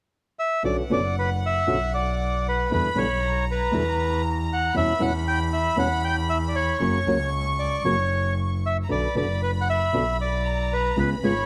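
Close, detailed microphones and a light reverb frame this short, passionate and melancholic tango excerpt in B harmonic minor, moving at a rubato 116 BPM in 4/4 over Bmadd9, Em7, C#m7b5/E and F# before settling on Bm. A reedy, dry, close-miked bandoneon carries the melody up front from 0.4 s, and at 0.6 s a thumb-plucked acoustic flamenco guitar, a focused, bowed double bass with vibrato and a studio violin section enter together. The violins play sul tasto as a second line, with a soft attack and a pure, floating, smooth top, and the bandoneon and the bass hold through to 11.5 s.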